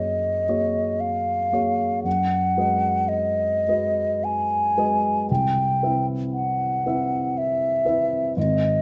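Close, detailed microphones capture a flute and baby grand piano in a moderate recital hall with a 1.7 s reverb tail, in a brief passage cut from a longer impressionist classical piece. Over a dark, mellow piano accompaniment reaching down to Ab1, the pure, hollow concert flute carries a pastoral, dreamy melody between Eb5 and Ab5 with vibrato, a soft attack and lifted highs, both instruments sitting up front. The rubato 3/4 passage moves through Gbmaj9, Abm7/Gb and Cmaj7 over its 8.8 seconds.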